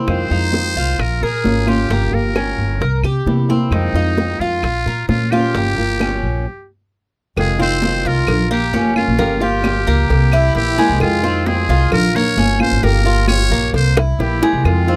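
A growling, metal-muted trumpet leads this sultry Cuban son and guajira fragment in F minor at 132 BPM, its buzzy, raspy tone and scooped notes giving the jazz-style solo a gritty edge as it enters at 0.1 seconds. Beneath it, a thumpy upright bass with gut strings sits up front, plucked pizzicato with a dark, woody weight. A Cuban tres adds metallic arpeggios from its doubled strings, some octave-doubled, while a small, fingerpicked nylon-string guitar supplies warm accompaniment. In the background, tight high-tuned bongos and cowbell played with soft hands, dry claves and ringing congas, softly struck and heard from a distance in a large room, keep the 4/4 groove moving. After a stop from 6.5 to 7.4 seconds, the second section returns to the Fm7, Gm7b5 and C7 changes, and a drum fill at 14.0 seconds closes this cut from a longer piece, all captured in a dry, close 1970s-style studio sound.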